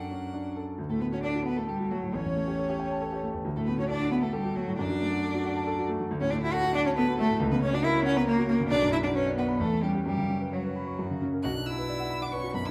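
All three instruments of this piano trio begin together at 0.0 s: a violin carrying the melody, a cello on a second line and a grand piano supplying accompaniment. It is a quick, restless classical-period movement in 3/4 at 136 BPM, played with a rubato feel and cut from a longer piece. The violin sounds distant yet rich, its bowed line smooth, even and touched with vibrato. The cello sits up front with a full, steady bowed tone and vibrato of its own, while the piano is close and mellow with a vintage, silken character. The music opens in D major and turns to a more urgent B minor from 6.1 s, tightening through a suspended harmony before a new section begins at 11.4 s, shortly before the excerpt ends at 12.7 s. Close, detailed microphones capture the players inside a wet recital hall reverb.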